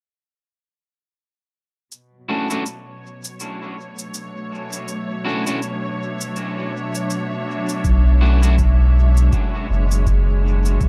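A round, up-front sine sub bass arrives at 7.8 seconds with an analog kick that is overdriven and sits in the background, anchoring this hazy, deep ambient dub excerpt at 81 BPM in B dorian with a swung 16th feel. Before that, a veiled, con sordino string ensemble fades in from 1.9 seconds on a Bm11 chord, bowing dark sustained chords with vibrato, alongside an electronic shaker treated with overdrive and dub echo. From 2.3 seconds, a bright, twangy electric guitar at the edge of break-up adds picked, low-pass filtered stabs soaked in dub echo, all within an echo-heavy digital ambience.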